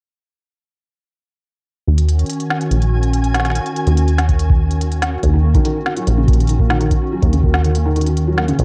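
IDM of an intricate, cerebral cast, cut from a longer piece, where a rubbery, resonant acid bass with a filter sweep sits up front beneath hollow, flute-like pad chords thickened by ensemble chorus, a flickering granular texture glints in the background, a woody snare and smooth hats from an organic electronic kit enter at 2 seconds and are joined by a deep analog kick from 4.3 seconds ahead of a brief break, and a felt-muted upright piano with audible action noise spins dub-echoed arpeggios from 5.3 seconds, all on a dry, worn cassette recording with warbly pitch drift.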